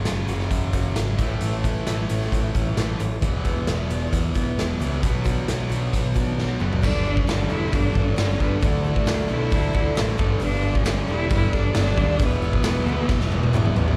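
A straight 4/4 pulse at 134 BPM drives this brooding, angsty slice of quiet-loud alternative rock, cut from a longer piece and heard as a live gig through the venue's PA with club reverb. The raw garage drum kit sits up front from 0.1 seconds, its punchy kick, medium-tuned snare, hi-hat, toms and crash saturated and gritty in a bright, pumping stone room, with fills closing each half at 6.4 and 13.1 seconds. A thick, bright fuzz guitar grinds out a distorted riff with slapback echo, while a growling, overdriven electric bass anchors the low end. In the background, a picked acoustic archtop guitar with old strings plays woody, boxy arpeggios through plate reverb and tape echo. At 6.8 seconds the harmony shifts from F#, A, Em and Bm to Gadd9 and Dsus2 colours before landing on E, and a single clear, focused cello enters with a bowed vibrato melody, bathed in plate reverb and slapback echo.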